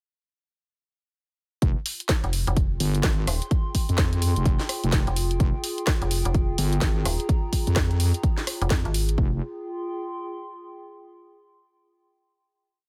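A punchy four-on-the-floor kick and programmed hats, rim clicks and a cracking snare backbeat drive this gritty, swaggering bass house piece at 127 BPM with a 16th-note swing in F minor. The drop kicks in at 1.6 seconds with a heavy, saturated wobble bass up front, soon joined by chopped phrases from a metallic FM bass, both pumping against the kick. A detuned, lo-fi pad drifts through slowly shifting chords beneath it all, then carries the final chord from 9.2 seconds, lingering alone from about 9.4 seconds until 11.0 seconds in an otherwise dry mix.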